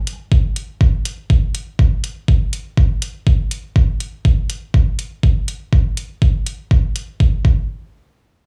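A knocking electronic kick drum sits up front in this short excerpt of sparse, cool minimal techno, running from 0.3 to 7.6 seconds. It moves at 122 BPM in 4/4, with a 60% swing on the sixteenths. Metallic electronic hi-hats enter just before it, at 0.1 seconds, and continue until 7.1 seconds, also placed close and forward. Both parts are layered, produced sounds that were re-recorded in a small room. The overall sound is dry and gritty, with the character of hardware and cassette tape and only a trace of studio reverb.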